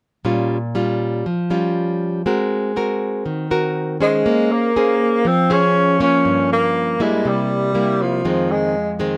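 Melancholic and smooth, this short excerpt of a bossa nova sits in a straight four-beat feel. A fingerpicked nylon-string guitar opens at 0.2 seconds, its fresh strings giving a warm, classical-toned accompaniment that carries chords such as Bbm6, Ab9 and Gm7b5. At 4.0 seconds a breathy tenor saxophone enters with the melody, played in a mellow jazz style with subtone, soft attacks, scooped notes and a gentle vibrato. Its whispered, intimate voice feels roomy and set a little back even as it stays prominent, while the guitar remains up front beside it. Close, detailed microphones and a light reverb keep the sound clear and natural.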